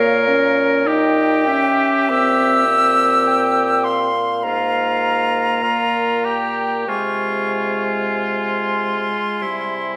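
In a rubato 4/4 at 47-53 BPM, this slow, melancholic and yearning classical movement for wind quintet in F minor carries an airy, vibrato-touched silver flute melody over a bright, up-front oboe second line, with mellow clarinet and present French horn accompaniment and a dark, distant bassoon bass, all five playing together for the full 10 seconds of this fragment in a wet recital hall.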